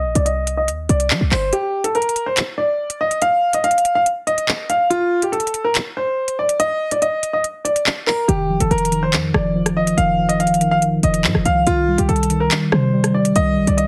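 Drill-style hip hop at 142 BPM in a half-time 4/4 feel, this tense, menacing clip is cut from a longer piece. A clear, woody upright piano carries the melody up front throughout, its long sustain dulled by a low-pass filter and doubled by a slapback echo. The drill kit enters at 0.2 seconds with crisp hi-hats, handclaps and rim clicks, its electronic sound roughened by vintage 12-bit sampler grit. A punchy, tight 808-style bass with a fast attack and a noise layer sounds at the start, drops out at 1.5 seconds while the chords fall away and the kick is muted, then returns at 8.3 seconds. At that point a mellow tine electric piano, clean and direct behind its own low-pass filter, joins on F7 before the harmony settles back to C minor. The mix sits in moderate studio reverb, with heavy multiband compression giving it a squeezed, radio-like sound.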